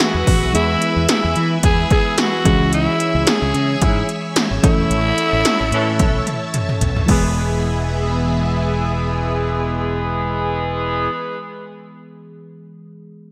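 A raspy, gritty alto saxophone leads this nostalgic, uplifting 1980s-style pop fragment in E major at 110 BPM, carrying the melody up front until 6.5 seconds over a mellow FM electric piano with chorus, shimmering string-machine violins, a very quiet twelve-string electric guitar riff and a round fretless bass. Punchy electronic pad drums with metallic hats and gated reverb on snare and toms set a light 16th-note swing, then mark a band accent and drum fill before stopping at 7.2 seconds. From 5.7 seconds a tight, clear horn section adds stabs with digital delay, and the whole mix sits in a lush hall reverb with bright digital production.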